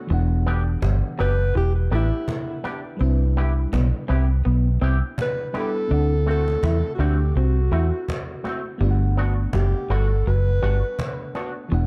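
A swung 83 BPM groove in 4/4 carries this smooth, sweet lovers rock reggae fragment in G major over an Em7, Cmaj7, D7, Gmaj7 cycle, with a round, foam-muted bass up front beneath a distant, woody cajon with dub echo, a soft chorused FM electric piano, a slightly broken-up lo-fi guitar riff with warbly pitch drift, twangy envelope-filtered guitar stabs, and a jazz-style alto saxophone melody with vibrato, scooped notes and tape echo entering at 1.2 seconds, set in a dark, dry production.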